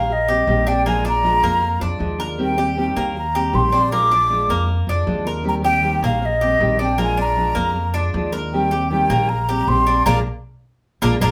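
A breathy, hollow jazz flute sings the melody from the first moment, carried over a danceable Latin groove in the Cuban son and guajira style that runs straight in four. Beneath it, a full-bodied nylon-string guitar fingerpicks the accompaniment, while a bright Cuban tres adds picked arpeggios with a metallic ring from its doubled strings. A woody pizzicato upright bass sits up front alongside the flute, whose soft attack, vibrato and lifted highs give the line a gentle glow. The harmony sways back and forth between Eb6 and Bb7, keeping the mood warm. The four players share one room with a wet studio reverb, and at 10.1 seconds the band lands a joint accent that carries through to the end of this cut from a longer piece at 11.3 seconds.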